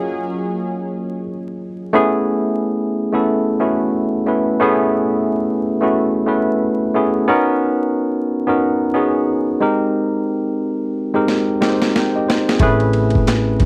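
At a 90 BPM 4/4 groove swung 60% on the 16ths, this sensual neo-soul R&B fragment in A major, tuned to A4 = 436 Hz, centres on a worn, slightly out-of-tune tine electric piano heard up front through a combo amp over ninth chords, while a lush, warbling, detuned sawtooth pad with chorus colours the opening and returns at 12.6 seconds alongside a growly, woody pizzicato upright bass, and a gritty, pitched-down boom bap sampler kit with thumpy kick, high-tuned snare, handclaps and ride cymbal arrives with a fill at 11.3 seconds, the whole mix set in light reverb and vinyl crackle for a dry, close 1970s-style studio sound.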